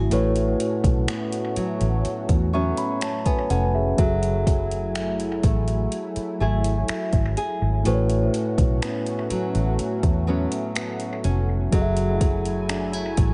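An echo-heavy mix with a dulled top end frames this moody, sensual contemporary R&B excerpt at 62 BPM, where a mellow tine electric piano with analog delay and a full-bodied, fingerpicked nylon-string guitar playing delayed arpeggios sit over a lush, detuned sawtooth pad treated with chorus and phaser, a round, foam-muted fingered bass up front, and a soft-kicked electronic drum kit of finger snaps, metallic hi-hat and kick re-recorded in a large room, as the chords alternate between A69 and F#m9.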